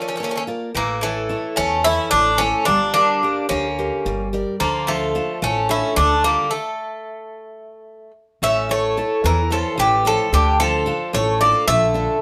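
Two bouzoukis and a picked steel-string acoustic guitar open this bittersweet, cool passage of Greek folk music in 7/8, with a straight feel. The lead bouzouki carries the melody up front, its bright, metallic double strings ringing with some octave-doubled courses, while a second bouzouki plays a lower line with a mellower tone and the same metallic shimmer of paired strings. The guitar supplies a full-bodied, auditorium-sized accompaniment, and from 0.8 s an upright bass adds a woody, dark, thumpy pizzicato low end from its gut strings. The harmony moves through Bb, A, Gm and Dm before a stop at 6.5 s, after which the band returns at 8.4 s with a new section built on A and Dm. A moderate studio reverb gives the group a natural sense of space, and the recording is cut from a longer piece.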